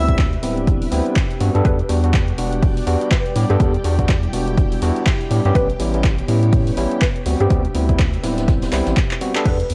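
A smooth, moody deep house excerpt at 123 BPM in 4/4, with a swung sixteenth-note feel and chords moving from D13sus4 through Em9 and A9 before returning to D13sus4. A punchy, up-front electronic kick and a round, deep analog bass with sidechain pumping anchor the groove, joined by a tape-warm analog drum machine supplying crash cymbal, handclaps and hi-hat, plus a very quiet, dry cocktail kit adding hi-hat and a high-tuned snare. Over this, a bright, overdriven tine electric piano plays gritty stabs through a combo amp, roughened by vintage sampler grit and analog delay, while a silky, warbling string machine holds soft sustained chords far beneath. From 1.7 seconds a woody, mallet-like synth pluck with chorus and delay carries the melody in the background, alongside a shimmering string-machine violin layer held on a single note. The whole piece has a cassette-tape character and a close, nearly reverb-free sound, and a drum fill arrives at 9.1 seconds just before the cut.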